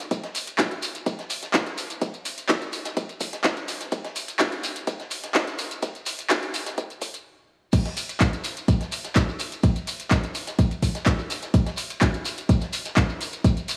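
House groove at 126 BPM in straight 4/4, hopeful and uplifting, cut from a longer piece. An overdriven, deep electronic kick sits up front beside a layered deep house kit of crash, handclaps, metallic hi-hats and ride, while a gritty, tape-warm sampler-style kit adds a medium-tuned snare and ride further back, its cymbals pumping from sidechain, and a grainy, mellow shekere from a small room fills out the percussion. A build-up runs until a brief stop at 7.3 seconds, then the drop lands at 7.7 seconds, all carried by a light digital ambience.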